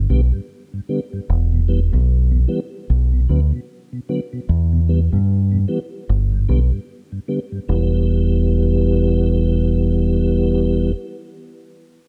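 A deep, punchy fingered electric bass anchors this serious, hypnotic roots reggae excerpt, sitting up front beneath a mellow tonewheel organ whose clean, round tone is colored by chorus vibrato and a slow rotary speaker, all set in dark digital ambience as the chords move through G, E minor and B minor before a new section arrives at 7.7 seconds.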